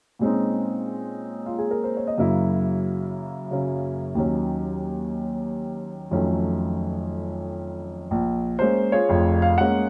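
A lone upright piano opens at 0.2 seconds, its woody, polished tone sitting up front in a dark, light-reverb production. This is moody solo jazz in Bb minor at 122 BPM in 4/4, swinging its eighth notes while also stretching time with a rubato feel. The harmony moves from Bbm11 through Gb7 and Ebm7 to a tense F7b9b13 before settling on Bbm7 as a new section begins at 8.1 seconds. The piano covers a broad span from F1 up to Gb5, and its long sustain lets each chord ring. Tuned slightly high at A4 = 441 Hz, this short cut from a longer piece ends at 9.9 seconds.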